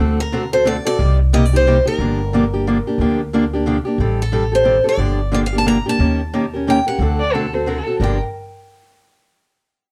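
A swung 3/4 pulse at 179 BPM drives this fiery, virtuosic excerpt of gypsy-jazz string swing in G minor, with a woody, growly pizzicato upright bass and a bright, concert-style picked steel-string guitar laying down the accompaniment up front from the start. A boxy parlour guitar carries the picked melody from 0.2 s, while a dark, bowed violin with vibrato slips in a second line at 7.2 s. The chords move through minor sevenths, dominant sevenths and a half-diminished chord under light reverb in a dark, warm production.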